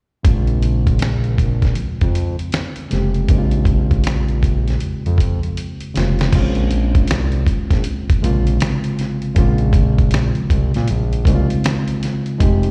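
A slow 79 BPM groove in 4/4 with a lazy 16th-note swing anchors this smooth, soulful neo-soul and R&B excerpt in Bb minor, cut from a longer piece. A dusty, sampler-style drum kit sits up front with a thumpy kick, fat snare, hi-hat, finger snaps and crash cymbal, its compressed, gritty sound re-recorded in a small room, and a drum fill at 5.6 seconds carries the music from the opening section into the second at 6.3 seconds. Arriving at 0.3 seconds, a smooth synth bass blends sawtooth, square and triangle tones with a touch of ring modulation, giving sustained notes with a fast attack that reach down to F1. A barky, reedy electric piano plays accompaniment a little further back, bright and lightly overdriven through its built-in speakers with a slapback echo, voicing a Bbm9 chord. The whole mix carries the sound of a live gig heard through a venue's PA, opened out by recital hall reverb.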